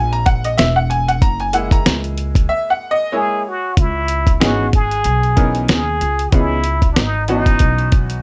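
A bright grand piano opens this smoky, nocturnal jazz-hop excerpt, taking a solo over woody pizzicato upright bass and a dusty, sampler-style drum kit that sit up front with a swung sixteenth-note feel. The drums are compressed and gritty, with a thumpy kick, a fat snare and hi-hat. The piano has a brilliant, worn tone with short sustain. A break arrives at 2.5 seconds, and at 3.2 seconds a trumpet with a plunger mute enters with the melody, its wah-wah tone, scooped notes and vintage jazz phrasing carried on a tape echo. At 3.8 seconds the harmony moves from an F#9 to a C#m9 as a second section begins, while the whole mix keeps a light reverb and a softened, rolled-off top end.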